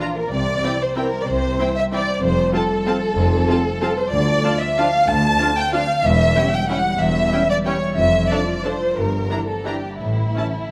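Dark and bittersweet, this excerpt from an orchestral ballroom waltz in 3/4 moves with a rubato feel, its up-front second violin line singing with soft-attack, expressive vibrato while a smooth violin melody sits high in the background. Intense, lush violas, mellow and distant French horns holding sustained chords, and a bright, ringing concert harp in arpeggios fill out the middle, with rich cellos and distant double basses joining on the bass line at 0.3 s. The harmony turns toward D minor at 4.1 s, and moderate concert hall reverb surrounds the ensemble.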